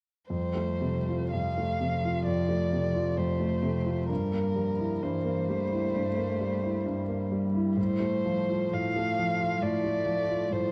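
Tender and serene, this short cut from a slow romantic movement for piano trio drifts in F major at roughly 57-69 BPM with a rubato feel, its harmony moving from F through C7/G at 4.1 seconds to F/A at 7.8 seconds. Up front, a woody, sul tasto violin carries the vibrato-laden melody over a clear grand piano accompaniment whose action noise is audible, while a single cello sits in the background with a soft attack, airy bow and smooth top on its second line. A moderate recital hall reverb and a dark production give the trio an intimate, unhurried glow throughout.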